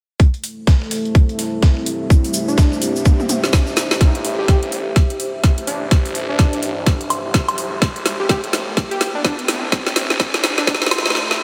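A tight, up-front electronic kick, a gritty sampler-style kit with a fat snare that plays until 4.0 seconds, and a dark analog pad on an Am7 chord open this aggressive, swaggering bass house excerpt, joined almost at once by a woody-snared, metallic-hatted garage kit and a warbling lo-fi pad. A grainy tube shaker and a catchy, punchy unison lead with tape echo slip in, while a background riser climbs through a drum fill into a build-up where a swirling, saturated detuned saw bass enters at 4.0 seconds under a filter sweep. The whole dreamy mix is soaked in a huge ambient reverb, with sidechain pumping on the pads and bass, before a closing swell.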